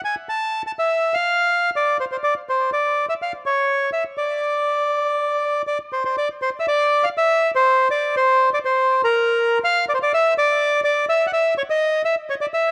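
Rubato phrasing in 4/4 gives this sultry, passionate tango fragment, cut from a longer piece, its freedom: a solo bandoneon, reedy, dark and smooth and set up front with a touch of tape echo, sings a repeated opening phrase between Bb4 and A5 in a dry, close 1970s-style studio sound.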